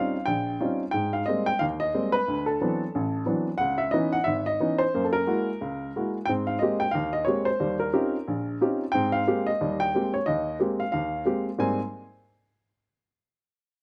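A baby grand piano plays solo in this relaxed jazz excerpt at 180 BPM in 4/4 with a swung eighth-note feel, moving through lush extended harmony in Ab major such as Eb13, Abmaj9, D13 and Dbm9 across a range from Ab1 to Ab5. The piano sounds intimate and up front, its short sustain and audible action noise touched by a slapback echo, and it plays from 0.0 to 11.8 seconds. Recorded outdoors, the sound is dry and open, with little reverb or room character.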